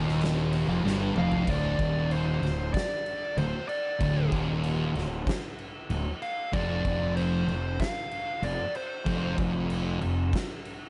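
A compressed fuzz lead guitar with analog delay carries the melody up front from 1.2 s in this ominous, heavy stoner and doom metal excerpt at 95 BPM, riding over two thick fuzz guitars playing low riffs in the background, a bright, double-tracked high-gain guitar that stops at 1.5 s, a growly overdriven fingered bass, and an oversized low-tuned drum kit with a fat snare, boomy kick and dark cymbals in a pumping stone room, whose fill leads into a rootless Cmadd9/D chord that gives way to F5 at 6.5 s.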